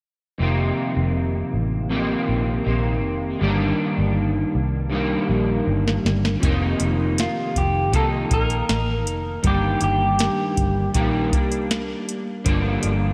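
Wistful and mellow, this short cut of 80 BPM indie bedroom pop opens with a twangy, slightly broken-up electric guitar carrying chorus-warbled chords over a round, foam-muted fingered bass, before a soft vintage rhythm box with a deep kick and metallic hats enters at 5.9 seconds in the middle of a fill, and a dark, lo-fi lead guitar with tape echo sings a brief melody from 7.2 seconds, all bathed in a lush hall reverb that lends an arena-sized glow.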